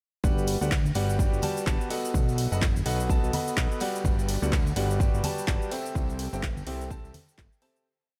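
Piano house at 126 BPM in G major with a swung 16th-note feel, euphoric and joyful, built as a single drop that fades out from 5.3 seconds over Gmaj7, B7 and C6 chords. A bright, brilliant grand piano sits up front with a rhythmic chord riff in close voicing, pumping against the sidechain with delay, while a fat, detuned sawtooth bass pumps beneath in a dotted rhythm and a layered, punchy kick drives four-on-the-floor. A dry, overdriven drum machine adds cabasa, open hats and claps, tambourine and high congas sit close but in the background, and light digital reverb gives the mix a gentle ambience.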